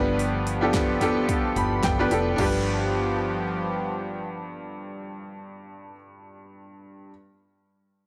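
A bright, woody upright piano drives this short, uplifting piece of piano-driven pop, sitting up front with a slightly detuned, worn character as it plays accompaniment from the start until 7.1 seconds. At 109 BPM in 4/4 with a light swing on the sixteenths, the music rests in G mixolydian over a G7 chord, carrying a hopeful mood. A smooth sawtooth analog pad with a slow attack and chorus holds sustained chords underneath, while a dark, round, foam-muted electric bass with tube saturation anchors the low end until 5.9 seconds. A punchy, layered electronic drum kit with a fat snare, metallic hats, crash cymbal and toms joins briefly at 0.2 seconds and drops out at 2.5 seconds, overlapping a piano fill that closes the opening section. Light reverb and digital ambience surround the parts, but the recording as a whole is blown-out and overdriven, giving it a gritty, saturated edge; the excerpt is cut from a longer piece.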